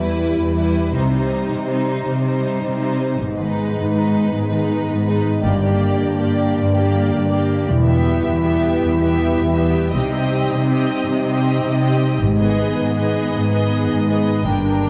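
Adventurous and swashbuckling, this heroic film-score passage in a straight 12/8 builds steadily through shifting minor chords, cut from a longer piece. Lush, focused violins carry the melody over a smooth second violin line and close, vibrato-rich violas, while mellow French horns sustain chords and a bright, ringing concert harp plays arpeggios, both set in the background. Rich cellos sit up front on the bass, joined at 0.9 seconds by dark, woody double basses, all within a moderate scoring-stage reverb and a warm production.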